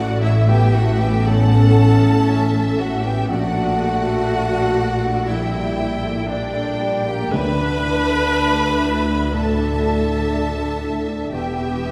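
Moving and uplifting, this short excerpt from a cinematic, emotional film score unfolds at a slow, rubato pace in 4/4, heard from further back in a reverberant scoring stage. A violin section carries the melody with light vibrato and a smooth, even tone, while a second violin section and a large, airy flute ensemble trace a second line, the flutes tongued and sitting in the background. Beneath them, a rich chamber viola section and a very quiet baby grand piano, open with long sustain, fill out the accompaniment as a French horn section holds sustained chords with a vintage, classical-style colour. Lush bowed cellos anchor the bass with a focused sound, joined in the background by the double bass section. Timpani struck with hard mallets add a very quiet, articulate accent from 7.3 to 8.8 seconds, as the harmony moves from A through Gmadd9/Bb to Dsus2 before settling toward Em.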